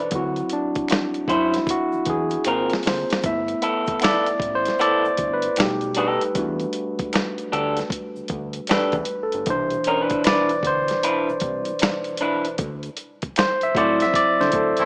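R&B with a neo-soul lean, this short cut from a longer piece moves at an unhurried, swung pace with a warm, smooth mood. An overdriven tine electric piano carries the lead as a solo from the very start, its barky, gritty tone pushed through a combo amp and sitting up front over chords such as D9, Ab69, Cmaj9 and Em11. A fat analog bass adds thick, mellow sawtooth and square-wave notes with a moving notch, while a boom bap sampler-style kit brings a thumpy kick, medium-tuned snare and hi-hat, compressed and tape-tinged, with a drum fill at 2.5 seconds. An electric guitar through a small old amp plays a picked second line, slightly broken-up and lo-fi, over a very quiet egg shaker and group handclaps from a small room. A band accent begins at 12.6 seconds, and a clear, tight vintage horn section lands a brief stab at 14.8 seconds, all wrapped in a moderate plate reverb and a rough home-demo mix with a small-speaker sound.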